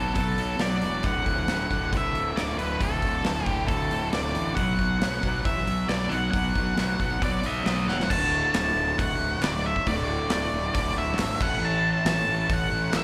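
A dark, fuzzed lead guitar carries the melody up front over two overdriven rhythm guitars, one bright and one warm, both set back with slapback echo, and a round, fuzzy fingered bass, with a punchy acoustic rock kit and bright cymbals joining at 0.2 seconds. This sunny, confident classic rock passage in D major drives along at 136 BPM in a straight 4/4, moving through Bm and D before a drum fill at 7.9 seconds leads into a new section that reaches A. Very quiet, crisp group handclaps enter at 8.6 seconds, and the whole band sounds like a live club gig heard through the venue's PA.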